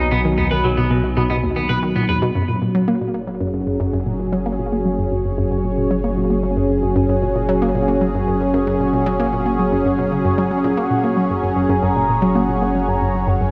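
A bright, full-bodied pad with a resonant, slowly swelling filter sits up front in this luminous, expansive stretch of sequencer-driven ambient space music, holding sustained chords with a chorus shimmer. Beneath it, a hollow, bouncy square-wave pluck repeats a low riff through chorus and analog delay, while a deep, round analog bass anchors the harmony in F# major at a steady 114 BPM in 4/4. A clean, twangy electric guitar opens with delayed arpeggios and stops at 2.2 seconds, just before the harmony moves from B to F#add9 at 2.4 seconds. From 5.2 seconds a very quiet, bubbling texture of random filter steps drifts in on a single high note, and at 10.8 seconds a mellow, horn-like synth lead with a soft attack and vibrato begins a high melody through chorus and delay. The mix is echo-heavy, set in a wet echo chamber whose long reverb tail opens up the space, and the passage is cut from a longer piece.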